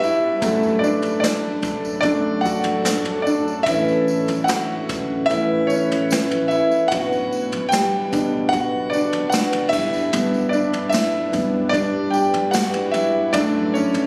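Built around an intimate grand piano with audible action noise and deep bass, this heartfelt, hopeful pop ballad in D major moves at 74 BPM in a straight 4/4, the up-front piano carrying the lead over thumb-plucked nylon-string guitar arpeggios, a shimmering, ethereal pad with chorus, a jingly tambourine, and a brushed drum kit with dark cymbals and a boomy kick that enters at 0.4 seconds, all caught by a phone in a club-like room as the chords pass from D/F# through Aadd9, Bm and G.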